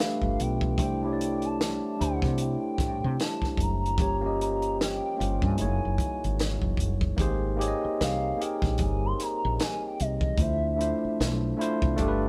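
Relaxed and smooth, this short R&B and neo-soul passage sits at 75 BPM in 4/4 with a swung sixteenth-note feel, cut from a longer piece. A gliding portamento lead carries the melody high in its range, its sine tone mellow and slightly detuned, with chorus, vibrato and a fast attack that settles into sustained notes. Beneath it, a clean, up-front tine electric piano supplies the accompaniment, while a very quiet French horn section holds soft sustained chords with light vibrato in a classical style. A compact cocktail kit of hi-hat, punchy kick and high-tuned snare sounds dry and close, and a woody fretless electric bass, dark, round and hollow-bodied, enters at 0.2 seconds with a direct, amped punch. The harmony moves through rich extended chords such as G9, Gm7b5 and Gb13 before shifting at 7.2 seconds to Abmaj9 and then Dm9, all heard as a band playing together in one room with light reverb.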